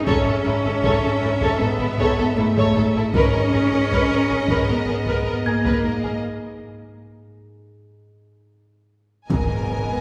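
Drenched in the reverb of a scoring stage and heard from deep in the room, this tense, uneasy suspense cue in G# minor moves at 78 BPM. Up front, a clear cello section carries the bass beneath a very quiet double bass section, while a ringing, fingerpicked concert harp riff, lush portamento violas, a focused violin second line and a distant, expressive violin melody fill the middle and top; vintage, band-limited taiko drums struck with hard sticks pulse underneath. A delicate, tinkling music box drops out at 6.2 seconds, and at 9.3 seconds mellow French horn chords, a smooth high violin texture and a background electronic impact arrive as this excerpt is cut from a longer piece.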